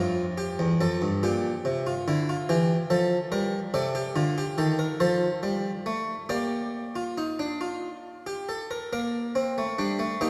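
Serious and contemplative, this brief passage from a longer baroque-style fugue in three parts unfolds at a stately 47 beats per minute in a straight 6/8, settling into B-flat major from 3.7 seconds, with the instrument tuned slightly above modern concert pitch. A single harpsichord carries all three voices, ranging from E2 up to D5 with a round, full, plucked tone in the Italian manner on one set of strings. The instrument sits up front and close, its own sound dry and warm, while the surrounding space is a church or concert hall whose long, wet reverb lingers for about three seconds. The harmony moves from Fmaj9 through Gm/Bb, Edim and Cm7 to F before arriving on B-flat at 6.3 seconds. A brief new section begins at 8.9 seconds, and the harpsichord plays on until the fragment ends at 10.3 seconds.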